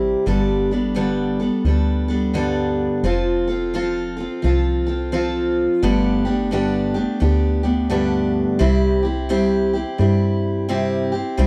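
A dry, close 1970s-style studio sound frames this sunny, easygoing honky-tonk country excerpt at 86 BPM in 4/4 with a swung feel in C major, where a bright, full-bodied picked steel-string acoustic guitar sits up front over a woody, round FM bass with a dark, decaying tone, the pair moving through Gadd9 and F before settling on C at 8.6 seconds.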